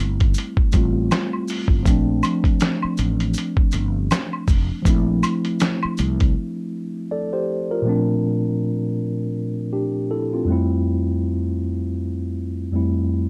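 Lo-fi hip hop at 80 BPM in swung 4/4, cosy and nostalgic, where a mellow tine electric piano with cassette-tape colour plays Fmaj9 and Bbmaj9 chords over a dark, round fretless bass with analog chorus, a muffled, compressed sampler-style kit with a thumpy kick, and soft saturated maracas and woodblock in light reverb, until the bass, drums and percussion drop out by 6.3 seconds and the piano carries on alone through a break and a new section to 13.3 seconds.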